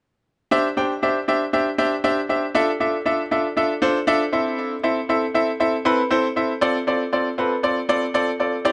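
Euphoric and summery, this short pop fragment, cut from a longer piece, moves in a straight 4/4 feel. A clear concert grand piano plays alone from 0.5 to 8.7 seconds, sitting up front with a natural tone and deep bass, its notes ranging from C4 to G5. A digital delay trails the piano's phrases, adding a sense of space to its clear voicing. The harmony moves through Cadd9, Dmadd9, Am and F6, the added-note chords lending an open, sunny lift. The sound sits in a small room with light reverb, and the top end is gently rounded, keeping the recording soft-edged and intimate.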